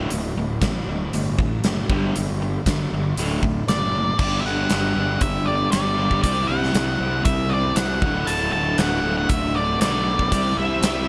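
A light reverb gives this swaggering, sunny classic rock excerpt a roomy finish, with a huge acoustic arena drum kit sitting up front: bright cymbals, a punchy kick, a medium-tuned snare and a pumping hall sound driving a straight 4/4 at 117 BPM in D major. Two picked, overdriven electric guitars, one biting and one crunchy, sit in the background playing riffs, while a fingered electric bass adds a bright, growly fuzz tone from the low end. At 3.7 seconds, an octave-fuzz lead guitar enters up front with a dark, distorted, picked melody in a high register. The harmony moves from D5 and G5 power chords to a D, G, C and D progression, giving the passage a bold, anthemic strut.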